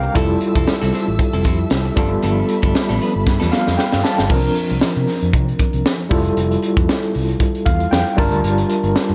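A lightly swung 16th-note groove at 116 BPM in 4/4 drives this upbeat, breezy slice of polished 1980s jazz-funk pop in F major, with a punchy, saturated fusion drum kit up front under gated reverb, its high-tuned snare, kick, hi-hat and crash locking in alongside a growly, amped fingered bass. A barky, overdriven tine electric piano with fast tremolo and analog chorus carries the accompaniment and adds fills, while a dark, compressed clean guitar riff with lush chorus and woody, bowed strings in the background both drop out around 4.2 seconds as the harmony moves to C9sus4. A drum fill from 3.3 seconds leads into the turn, and the clip sits in light reverb with a cassette-tape sheen.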